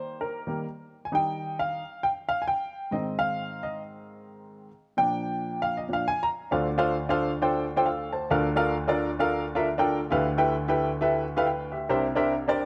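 Uplifting and soulful, this short gospel passage, cut from a longer piece, moves at 134 BPM in 4/4 with a swung eighth-note feel in Eb major. A lone upright piano carries everything from 0.0 to 12.7 seconds, its woody, intimate, slightly detuned tone sitting up front with audible action noise. An echo chamber reverb lends moderate space as the harmony moves from Eb through Ab and Bb before turning toward Dm7, G13/D and a closing C9 in the second half, which begins at 6.5 seconds.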